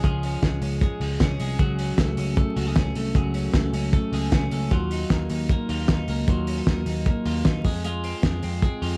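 Breezy and youthful, this short cut from a longer jangly indie pop piece moves at 154 BPM in a straight 4/4. A bright, twangy twelve-string electric guitar sits up front, its clean, compressed picked arpeggios ringing out from F3 to Ab4 over chords that run from Db to Gbmadd9, then Ebmadd9 at 4.7 seconds and Fm at 7.6 seconds. Beneath it, a picked electric bass gives round, foam-muted low notes between C2 and F2, dark and amped in tone. The cloth-damped drum kit is the loudest part, a thuddy, muffled small-room sound with a fat snare, tight kick and hi-hat, lo-fi, gritty and saturated with a rolled-off top. Light reverb, a dark production and a layer of vinyl crackle give the whole a warm haze.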